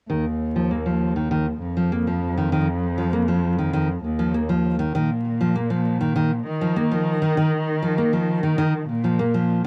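Delicate and wistful, this folktronica fragment at 99 BPM in 4/4 pairs warm, fingerpicked nylon-string guitar arpeggios, run through a low-pass filter and tape echo, with a woody, bowed cello bass line carrying vibrato and a filter sweep, both up front over an Ebsus2 chord that shifts to Bbsus4 at 4.9 seconds, all in a close, dry 1970s-style studio sound with moderate booth ambience and vinyl crackle, cut from a longer piece.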